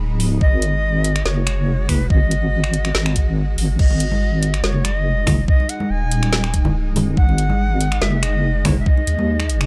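A cloudy, granular pad and a deep, chorused wobble bass open this heavy, meditative deep dubstep excerpt at 142 BPM in half-time, the dark bass sitting up front beneath the blurred pad. A knocking, tape-warmed kick and a garage kit of woody snare, metallic hats, finger snaps and crash arrive almost at once, while a reedy bamboo shakuhachi carries the melody with vibrato, chiff and dub echo. Ringing congas join in the background at 3.9 s, in a dry mix tuned to A4 = 435 Hz.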